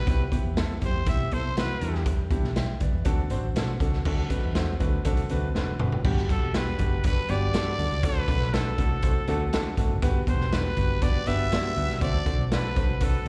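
Uptempo 1960s-style soul at 120 BPM in G major, this warm, uplifting fragment of a live gig comes through the venue's PA into a recital-hall ambience. A raspy, growling trumpet with light vibrato opens with a brief solo, falls silent, and returns at 6.3 seconds to carry the melody over Gmaj7 and D7. A deep-toned concert grand piano and a round, foam-muted electric bass sit under a saturated, gritty garage drum kit whose boomy kick and pumping room sound lead into a drum fill at 5.5 seconds.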